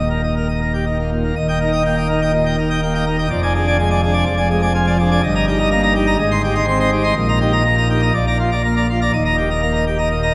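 Majestic and jubilant, this short passage is a classical organ toccata cut from a longer piece, moving in a steady, straight four. A single pipe organ plays alone throughout, drawn on a full plenum with mixtures that give it a brilliant, baroque-voiced sound placed up front. Its range stretches from the deep bass register around Eb1 up to C6, so the sound fills the space from the floor to the heights. The harmony opens on a grounded tonic, shifts to a diminished chord at 3.3 seconds, then passes through an Abmaj7 and a Bb chord before settling home at 9.1 seconds. A generous church reverb with a long 3.2-second tail surrounds the instrument, lending the whole passage a resonant, ceremonial grandeur.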